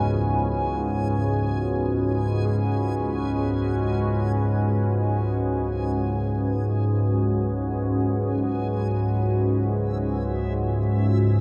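An organ-like drone sits up front in this dark ambient piece, a calm, detuned unison of sine and triangle tones with ring modulation, ensemble chorus and a slow attack, holding low notes from C#2 to G#2. Alongside it, also up front, a deep, moody pad sustains evolving chords in sawtooth and sine with a sub octave, its mellow body softened by chorus. Higher up, a reversed, dreamy texture swells between E5 and G#5 with a bright, granular shimmer, and the synth texture fades out over the opening 8.0 seconds. A concert grand piano plays arpeggios with deep bass, barely audible, until it stops at 8.4 s. In free time over a C#m7 chord, the mood is vast and ominous, and a wet cathedral reverb with a 5.4-second decay places this brief cut from a longer piece in an echoing space.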